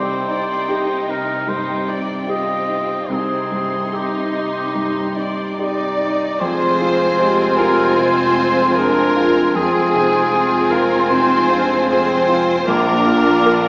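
Rubato at 76 BPM in 4/4, this moving, longing cinematic film score in F dorian opens with distant violin sections carrying the melody and a second line over a warm oboe, a lush viola section, an intimate grand piano with audible action noise and a clear cello bass, before a mellow cor anglais solo joins the melody at 5.6 s and, at 6.4 s, a very quiet clarinet, a pure large flute ensemble, a dark, soft-attacked French horn section and a rich double bass section join, the whole mix wrapped in wet scoring-stage reverb and heard from further back through a small speaker.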